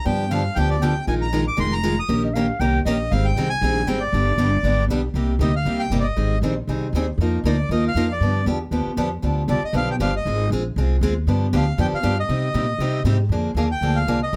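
Close, detailed microphones and light reverb frame this swinging, bittersweet stretch of acoustic string swing in the jazz manouche style, cut from a longer piece. A reedy, smooth accordion carries the melody up front over a bright, boxy picked steel-string parlour guitar with fresh strings and audible finger squeak, and a woody, thumpy pizzicato upright bass on gut strings, moving through chords such as G7, Abmaj7 and Cm7. A mellow clarinet slips in only from 2.2 to 2.8 s with a subtone, light vibrato and scooped notes.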